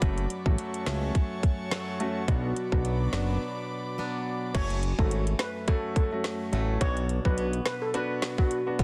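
Bouncy and hypnotic, this dancehall excerpt rides a swung groove from an electronic island pop drum kit with a tight kick, woody snare and metallic hats roughened by vintage 12-bit sampler grit, up front beside a fat, detuned analog bass with a wave-folded filter sweep. A grand piano with sidechain pumping and a boxy, picked acoustic guitar playing swing-style arpeggios keep the minor chords moving, while an airy, breathy pad with chorus holds sustained chords until a short break ends at 4.5 seconds. From there a shimmering steel pan carries the melody through delay until 8.5 seconds, all sitting in studio reverb under a dense, heavily limited modern master.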